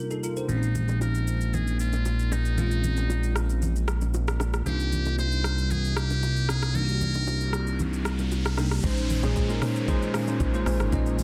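A bell-like electric piano with analog chorus opens this late-night, soulful amapiano excerpt. It is soon joined by an electronic drum kit with a knocking kick and crisp hats, bright close congas and bongos, a fat sawtooth analog bass, and a buzzy muted trumpet melody with vibrato and tape echo, all under a filter sweep as the chords move from Bbm11 to Cm11. A riser arrives at 7.4 s and the drop lands at 8.8 s, where a deep, dark FM log drum bass replaces the analog bass, soft round plucks add brief stabs, and a very quiet, ethereal, warbling pad appears in a digital ambience, in a dense, heavily limited modern master.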